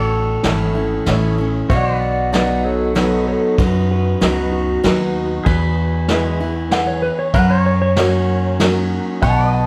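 A twangy, fingerpicked pedal steel guitar takes a heartfelt solo over a second steel's sustained chords in this down-home honky-tonk and classic country waltz at 96 BPM in 3/4, with a bright, full-bodied picked acoustic guitar, a thumpy gut-string upright bass up front, a detuned, jangly upright piano in the background, and a brushed drum kit with dark cymbals joining at 0.4 s, all moving through A, B, E and F# in moderate studio reverb.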